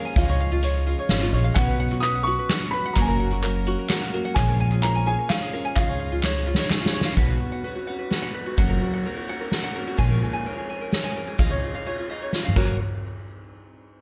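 A dry indie folk excerpt in waltz time, anthemic and hopeful, where a dark, boxy upright piano carries the melody through a digital delay until 6.9 seconds over a shimmering, octave-doubled twelve-string guitar, fingerpicked tenor ukulele arpeggios with delay, an intimate concert grand in the background until 7.2 seconds, a woody, thumpy pizzicato upright bass and a punchy soft-mallet drum kit with dark cymbals and fills, while crisp group handclaps join at 1.6 seconds.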